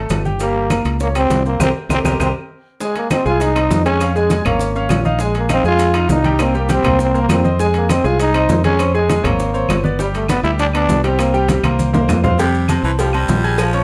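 A moderately reverberant studio sound frames this fiery, passionate salsa, cut from a longer piece, where a growling, gritty trombone with scooped notes and plate reverb carries the melody until 11.6 seconds over a brilliant grand piano with audible action noise, a dark, round fingered electric bass, soft-handed congas, quiet bongos and cowbell, woody claves, grainy maracas and ringing, saturated timbales and agogo bells, with a band accent at 1.6 seconds and a raspy, close-miked baritone saxophone taking a second line from 12.4 seconds.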